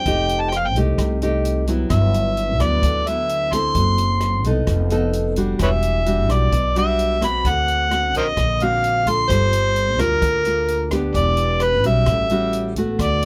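A breezy, romantic bossa nova at 130 BPM in straight 4/4, heard as a 13-second cut from a longer piece. An overdriven harmonica carries the melody up front, its amplified tone gritty with vibrato, scooped notes and tongue slaps in a jazz solo style that ranges from Bb4 to C6. A fingerpicked nylon-string guitar sits equally forward with a classical touch, its finger squeaks audible as it moves through rich chords such as F9, Gmaj13, Em9 and D7alt. At 0.1 seconds a woody pizzicato upright bass on steel strings enters to hold the low end, together with an open jazz drum kit whose hi-hat, rim click and boomy kick sound natural in a studio room. Close, detailed microphones and little reverb keep the sound intimate and dry.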